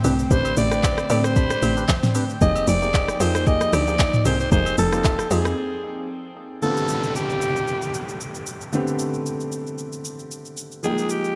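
Light reverb gives this short, hypnotic amapiano passage a deep, close-knit sound, set at 114 BPM in 4/4 with a swung sixteenth-note feel in A minor. Up front, a breathy, raspy alto saxophone carries the melody throughout with vibrato and tape echo, while an overdriven electronic R&B kit with a soft kick, fat snare and metallic hats drives it with handclaps, rim clicks, shaker and toms. In the opening drop, a tight, punchy FM log drum bass sits beneath an airy, detuned pad with chorus and sidechain pumping, hollow organ stabs with chorus and tape echo, and dry agogo bells and woodblock in the background. A break arrives at 5.6 seconds, and at 6.6 seconds a natural baby grand piano with short sustain takes over the accompaniment as an electronic downlifter plays until 10.8 seconds. The harmony moves between Am11 and Fm11.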